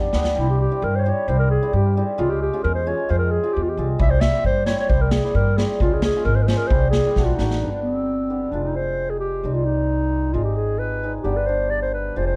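Klezmer at 132 BPM in a straight 2/4, soulful and festive, set in C phrygian dominant before moving to G phrygian dominant at 7.6 seconds. A dark clarinet with a soft attack and smooth top carries the melody up front in a classical solo style, colored by analog delay. Beneath it, a hammered dulcimer adds a shimmering, ringing accompaniment, while a woody pizzicato upright bass on steel strings sits up front and anchors the low end. A street-band drum kit with a boomy kick and medium-tuned snare opens with a short fill, returns at 4.0 seconds, and closes its run with another fill leading into the second section at 7.6 seconds. The chords move from C through Db and Fm, then shift toward G, Fm, Cm and Ab. The production is dark and warm with light reverb, and this excerpt is cut from a longer piece.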